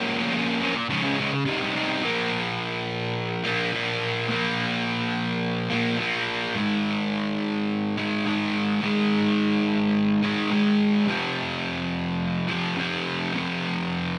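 A wet, roomy studio ambience surrounds this dark, brooding rock excerpt at 106 BPM in straight 4/4, where a sludgy, overdriven electric guitar, picked, double-tracked and up front, takes a solo role from 0.0 to 14.2 seconds, moving from Bbm, Db and Cm into Bb5, Ab5 and F5 power chords after 2.0 seconds, cut from a longer piece.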